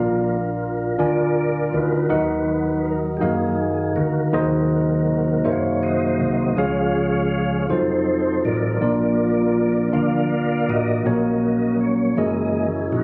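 Hopeful and jubilant, this gospel excerpt moves at a slow 54 BPM in a straight 6/8, cut from a longer piece and lasting about 13 seconds. A soft, mellow, flute-like tonewheel organ takes the solo throughout, sitting up front with key click, chorus vibrato and the shimmer of a fast rotary speaker. Beside it, a tine electric piano supplies accompaniment with a worn, slightly out-of-tune character, heard clean through its built-in speakers. Underneath, a hollow-body short-scale electric bass, played with the fingers, adds a dark, round and punchy low end. The harmony travels from A# through D#m, G#7/D# and an F7b9 before returning to A# and closing on F#13. Captured on a phone in the room, the recording carries club reverb, light digital ambience and compression.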